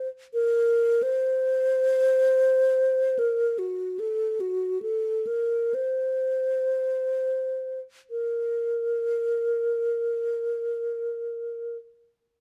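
Classical solo piece, mournful and meditative, in which a single airy, hollow alto flute plays freely with rubato at a very slow 22-45 BPM in 4/4, tuned to A4 = 439 Hz, its mellow, close-miked sound sitting up front in light reverb, with vibrato and tongued notes ranging from Gb4 to C5, slowing down until a new section begins at 8.1 seconds and the flute falls silent at 11.8 seconds in this fragment cut from a longer work.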